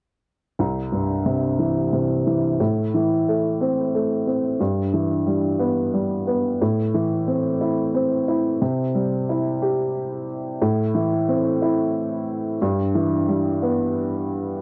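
Set in a 6/8 metre with a straight feel, this dramatic and melancholic pop piece, cut from a longer work, unfolds at an unhurried dotted-quarter pulse. A lone upright piano carries everything, playing from 0.6 to 14.6 seconds in a range from C2 to G4, its tone woody and natural and placed up front. The harmony circles through C, Am and Em/G, returning to Am before the second passage at 8.6 seconds restates the same C, Am, Em/G movement. A cassette tape character colours the piano, and the instrument is tuned slightly below standard pitch, at A4 = 438 Hz. A light reverb and the intimate feel of a home recording on cassette give the sound a warm, close, personal quality.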